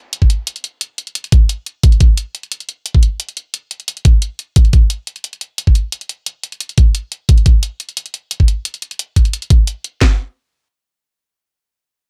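A straight 4/4 pulse at 176 BPM drives this melancholic, soulful liquid drum and bass excerpt, led by an up-front electronic kit with a knocking kick and a cracking snare, layered and re-recorded in a small room. Bright, layered electronic hi-hats sit well beneath the kit in level and share that same small-room character. The dry mix keeps both parts close and present until the hats drop out at 9.9 s and the kit follows at 10.1 s.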